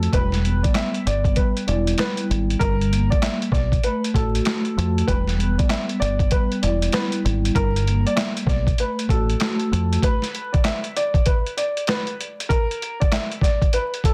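A swung boom-bap hip-hop groove at 97 BPM sets a dark, reflective mood in this 14-second excerpt, with a gritty, pitched-down sampler kit of thumpy kick, high-tuned snare, handclaps and hi-hat sitting up front beside a round, punchy dub electric bass, while a soft-mallet vibraphone with slow motor vibrato adds ringing, tape-worn accompaniment through chords moving from Em to Gm to B5. Over it, a worn, woody upright piano carries the melody with a slightly detuned, intimate tone, audible action noise and digital delay. The bass and vibraphone drop out at 10.0 s, leaving piano and drums to finish the passage under vinyl crackle and a dense, heavily limited master.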